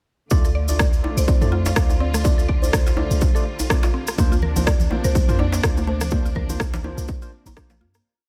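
A warm, spiritual afro house groove opens at 0.3 seconds with a punchy, overdriven four-on-the-floor kick up front, a deep, boomy 808-style bass playing long gliding notes, and a lush bowed string section holding sustained chords with vibrato and a smooth top. Around them, a woody, round synth pluck repeats a 32-step arpeggio sequence in the background with chorus and dub echo, while a bright, barky electric piano, gritty through a combo amp, punches in dotted-rhythm stabs that also trail dub echo; the strings, pluck, electric piano and bass all pump against the sidechain. A tape-warm electronic rim click carries the hats and backbeat, a grainy, distant cabasa ticks out swung sixteenths, and a softly played djembe adds a hand-drum cross rhythm from the back. A hollow, ringing kalimba floats motif-based call phrases in the background, echoing into the small room ambience. At 4.2 seconds the harmony shifts from D minor to B-flat add9, and thick-skinned, high-tuned congas enter with hard, interlocking hands. 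The whole piece fades out from 5.5 seconds to its end.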